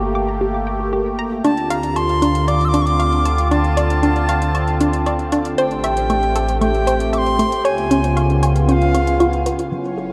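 Ambient, sequencer-driven space music in D minor at 116 BPM, this mysterious, expansive cut from a longer piece opens on a sweeping, resonant pad holding sustained chords through chorus, phaser and shimmer reverb, a hollow, bouncy square-wave pluck riff trailing delay, and a deep, round sine sub bass. At 1.4 s a reedy wooden flute takes the melody with airy vibrato, close-miked and echoing, while overdriven analog hi-hat and woodblock tick softly in the background. A bubbling stepped-filter texture surfaces at 9.7 s, all steeped in a huge, dark reverb as the chords move from Gmadd9 through Dm7 and Am7 to C#7.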